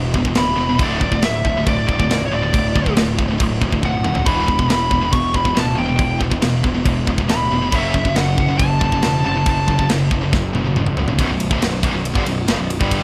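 A dry heavy metal recording, cut from a longer piece, carries a relentless, dark mood over a straight four-four pulse. An acoustic kit sits up front with a tight kick, medium-tuned snare and a rolled-off top, joined by two bright, picked high-gain guitars that churn out riffs in the background alongside a growly, fuzz-soaked picked electric bass. A darker distorted lead guitar sings a high melody from 0.4 to 9.9 s. Drum fills land around 3.8 s and again at 10.3 s, just before the closing shift to a minor chord.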